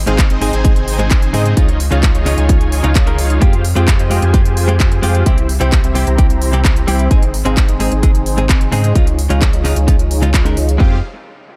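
A huge, detuned supersaw riff plays through a filter sweep across this anthemic, emotional festival progressive house passage at 130 BPM in F minor, pumping against a punchy, up-front electronic kick, a deep saturated sub bass, a clean, direct-recorded electric guitar with dub echo, and crisp house handclaps and hi-hats, all over an Ab, Dbadd9, Fmadd9, C progression in digital ambience.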